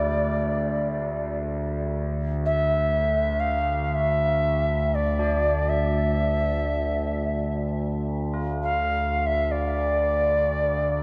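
Drenched in a dark, wet cathedral reverb, this spacious, haunting fragment of free-time world meditation music puts a reedy, airy cedar flute with vibrato and a diffuse delay up front beside a resonant, chorused drone of moving overtones, while solemn, metallic tubular bells ring quietly in the background throughout its 11.0 seconds.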